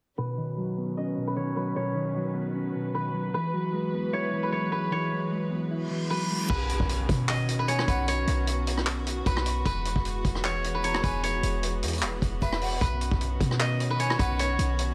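Hip hop in a trap vein at 152 BPM with a half-time feel in B major, this excerpt from a longer piece feels triumphant yet wistful. It opens with a silvery, fingerpicked steel-string zither carrying the melody through low-pass filtering and delay, beside a dark, compressed electric guitar bathed in spring reverb and sustained chords from a chamber string section bowed sul tasto with light vibrato. A filter sweep runs under this opening, and the harmony moves between Badd9 and Eadd9. A reverse cymbal in the background rises from 5.8 s into an impact at 6.5 s, where the guitar drops out and a vintage drum kit arrives with punchy kick, handclaps, hi-hat, rim clicks, dark crash cymbals and a gritty sampled edge, joined by a deep, boomy sine-like 808 bass. A breathy, slightly unsteady jazz flute with vibrato and delay sits in the background as a second line, appearing briefly and then returning from 10.8 s. 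The mix has a light, small-room reverb, with the drums and guitar up front.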